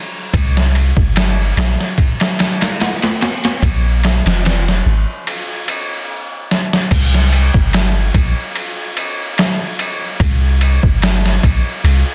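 Trip hop with a melancholic, smoky mood, cut from a longer piece and moving at a gently swung, unhurried pace. A soft, round 808-style bass with a deep sine tone sits low beneath an up-front sampler-style drum kit that sounds pitched down, muffled and overdriven, with a thumpy kick, medium-tuned snare, ride and crash cymbals. Both parts begin at 0.3 seconds, a drum fill at 6.5 seconds leads into the second section, and the mix is dry, dense and heavily limited.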